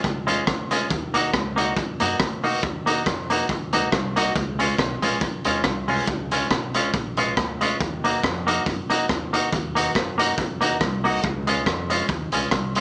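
Ska excerpt with a driving, mischievous swing, where a punchy, gritty garage drum kit of hi-hat, kick and rim click carries dub echo up front alongside a bright, clean, picked semi-hollow electric guitar entering at 0.3 seconds, while a woody pizzicato upright bass sits low beneath chords moving between Db and Ebm, all in a moderate club reverb with a small-speaker sound and faint mains hum.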